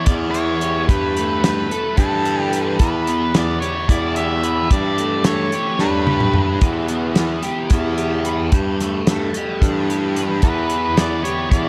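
Psychedelic rock in 7/8, hypnotic and dark, this short excerpt circles between Em and Gadd9 over a buzzing, shimmering tanpura drone set in the background, while a breathy baritone saxophone with vibrato carries the bass line up front. A bright, double-tracked overdriven guitar picks the riff through a flanger, and a dark octave-fuzz lead guitar sings its melody through diffuse ambient delay, dropping out at 6.4 seconds and returning at 10.4. A damped 70s drum kit with a fat snare and tight kick sits dry and close, marking a fill at 5.8 seconds, all inside a dreamy mix soaked in lush hall reverb.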